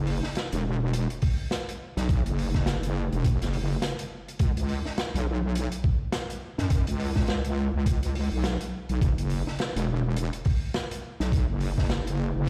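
This glitch hop excerpt rides a swung 4/4 groove at 104 BPM, with the sixteenths pushed to a 58% swing that gives it a funky, swaggering strut. A heavy wobble bass holds the low end from 0.0 to 12.5 seconds, its square and sine tones detuned and resonant, thickened by chorus and tube saturation and pressed up front with a fast attack and long sustain. An acoustic jazz kit of hi-hat and snare runs underneath from 0.1 seconds, dark and smooth with a medium-tuned snare and a rolled-off top that keeps it in the background. From 1.2 seconds a sampler-style electronic kick enters with a thumpy, compressed punch, pitched down, gritty and tape-warm, sitting forward in the mix. A brief break arrives at 3.8 seconds, and the whole piece sounds as if played on a big sound system in a bare room, wrapped in large studio reverb.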